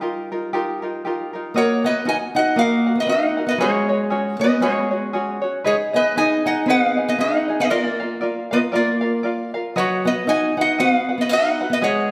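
Dreamy and languid, this swung Hawaiian fragment features a bright, nasal metal-body resonator slide guitar carrying the melody over a boxy fingerpicked acoustic archtop guitar, whose finger squeaks come through on its second line, and a light fingerpicked tenor ukulele accompaniment, all three up front in the lush reverb of a recital hall.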